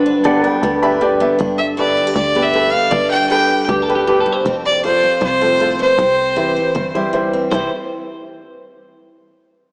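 A straight 4/4 country groove rides on a picked, auditorium-toned steel-string acoustic guitar and a tight, punchy sequencer bass with a nasal sawtooth filter pluck, while a woody, intimate upright piano with audible action noise fills in the accompaniment. The clip opens on a bright, twangy clean electric guitar solo with subtle chorus and diffuse delay, joined by fingerpicked pedal steel slide chords with volume swells and a short piano fill. Then the up-front, clear fiddle takes the heartfelt melody at 1.6 s with light vibrato, all set in a dreamy, sunny mix soaked in plate reverb with a small-speaker sound.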